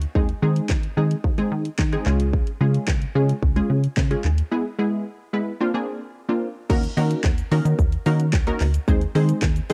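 A dry, close home-cassette sound frames this short cut from a longer dance-pop piece, confident yet bittersweet, moving at 110 BPM in a straight 4/4 in Eb dorian. The electronic pop drum kit sits up front with a punchy kick, a fat snare, hi-hat, handclaps, shaker and crash cymbal, its layered, produced tone colored by cassette tape. Alongside it, a funky analog bass blends sawtooth and pulse waves into a fast-attack filter pluck with a moving notch, mellow and decaying, pumping under sidechain compression as it ranges from Db2 to Eb3. At 0.2 seconds a full-bodied chord stab enters, detuned sawtooth and pulse layers given a chorus sheen and tape grain as they sketch changes like Ab/Eb, Db and a turn to E. A break arrives at 4.5 seconds, and from 6.7 seconds a new section settles onto Ebm7 before returning to Ab/Eb.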